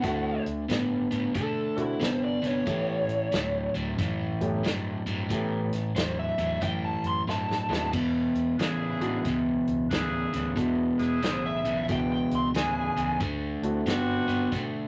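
A swung 4/4 shuffle at 91 BPM drives this soulful, gritty electric blues excerpt, moving through D7, A7 and E7, with a drum fill at 7.3 seconds. A crunchy overdriven guitar riff sits up front over a round, foam-muted fingered bass and a natural acoustic kit with a punchy kick and medium-tuned snare, while a woody upright piano with audible action noise fills in beneath a lo-fi, dark-toned lead guitar melody pushed through a small cranked amp. From 8.6 seconds a tight, bright saxophone section with light vibrato adds jazz-style stabs, and moderate studio reverb holds the mix together.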